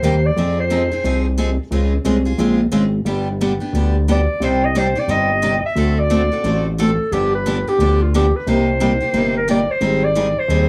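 A clear clarinet carries the melody in this virtuosic, bittersweet jazz manouche excerpt in C minor, sounding distant and roomy under plate reverb, with vibrato and scooped notes; it plays briefly at the start, drops out, then returns at 4.1 seconds. Two picked steel-string acoustic guitars accompany throughout at a swung 178 BPM, one bright and up front with finger squeak, the other boxy and parlour-like in the background. A fat, saturated analog bass with a detuned sawtooth edge sits up front beneath chords moving from Fm7 through D7 and G7 to Cm7 and Abmaj7, all in a small club ambience.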